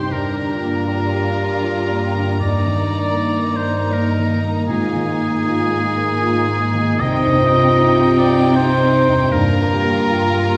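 Rubato in 3/4, this hopeful, uplifting cinematic cue cut from a longer piece sets a lush violin section's vibrato melody over a clear, up-front oboe and a focused second violin line, while a dark vintage grand piano with long sustain, softly portamento violas, mellow French horns holding chords, ringing thumb-plucked harp arpeggios and a rich, distant cello bass move through Gm7, Ebmaj7/G, Absus2 and Cm, all heard from further back in a reverberant scoring stage.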